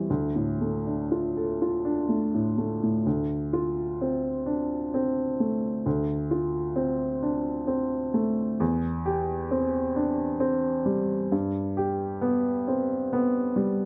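A woody, polished upright piano plays alone in this melancholic, longing contemporary classical fragment, sitting up front in close, detailed sound with light reverb. In 6/8 with free rubato, it opens on D minor before a new passage begins at 3.1 seconds, drifting through Dm7 and C/E to reach G at 11.3 seconds, lingering there until the cut ends at 13.9 seconds.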